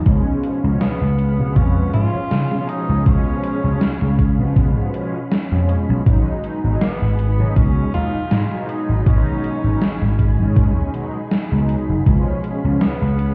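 A clear tenor saxophone with light vibrato and scooped notes carries a jazz-style solo from 0.8 seconds over a hazy, melancholic vaporwave groove at 80 BPM, where a punchy amped slap bass and up-front overdriven drum-machine beats (a thumpy electronic kick, plus hi-hat and a gated-reverb snare) anchor a detuned, brassy synth accompaniment with analog chorus and tape echo while a silky, warbling string machine sustains in the background over C#7 and G#m7 chords, the whole excerpt sounding muffled as if heard through a wall, with stone-room reverb.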